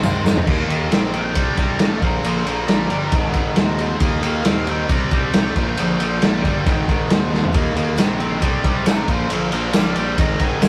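A straight 4/4 pulse at 136 BPM drives this gritty classic rock excerpt, led by a vintage drum kit that sits up front with a punchy kick, medium-tuned snare, dark cymbals and a muffled, lo-fi small-room character, opening with a fill before a second fill at 7.3 seconds. Underneath, a fingered electric bass growls with fuzz and overdrive. A tight, bright distorted guitar carries a riff, joined very quietly by a crunchy overdriven guitar. A jumbo steel-string acoustic guitar adds full-bodied picked accompaniment low in the mix, while a dark octave-fuzz lead guitar with analog delay plays the melody in the background. The chords cycle through Eb, Cm, Bb and Ab, a jingly tambourine returns at 8.0 seconds, and the whole take has a rough rehearsal-room feel with light reverb, tuned to A4 = 439 Hz.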